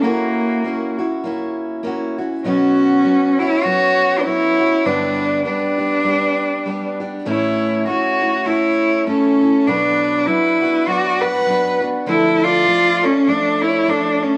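A rich, focused cello carries the melody up front, its one bowed player singing with vibrato yet sounding slightly distant. This hopeful acoustic folk piece moves at 100 BPM in 4/4 with a gentle swing on the eighth notes, and the cut runs about 14.4 seconds as part of a longer work. Above it, a single dark, woody fiddle plays a second line with light vibrato, also set back and mixed lower than the cello. A picked steel-string acoustic guitar supplies the accompaniment with an auditorium-like tone, and finger squeaks come through. The harmony travels from F#7/A# through Bsus2, G, A and Bm before landing on Dm at 12.1 seconds, while a wet echo-chamber reverb and a small-room ambience lend the sound a warm, enveloping space.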